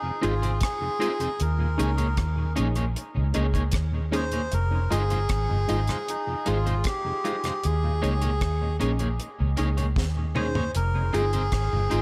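Deep and heavy, this 12-second dub reggae excerpt moves at 77 BPM in F minor, shifting between Fm7 and Eb7sus4 as a reedy, breathy melodica carries the melody through dub echo over a soft, flute-like tonewheel organ on slow rotary speaker. From 0.2 seconds a round, foam-muted fingered bass sits up front beneath a slightly broken-up, scooped electric guitar with dub echo and a detuned sawtooth chord stab, its filter pluck treated with phaser and echo in the background. A dry drum kit with a high-tuned snare and tight kick holds the groove, rolling into a fill at 10.0 seconds, all within an echo-heavy mix touched by light studio reverb.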